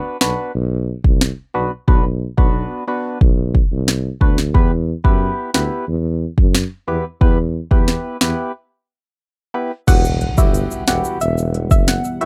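A dry mix puts an electronic afro-pop drum kit up front, with deep kick, sharp snare and crisp hats, in this bouncy, sultry dancehall excerpt at 90 BPM in E minor. A mellow tuba carries the bass line with light vibrato and a smooth top beneath a hollow, nasal organ stab with chorus, moving from Bm to Em before a break at 8.5 seconds. At 9.9 seconds the harmony shifts to Emadd9 as a soft, round pluck with tape echo and a ringing acoustic tube shaker arrive. A background impact follows at 10.0 seconds, joined at 10.7 seconds by a very quiet, deep, moody pad.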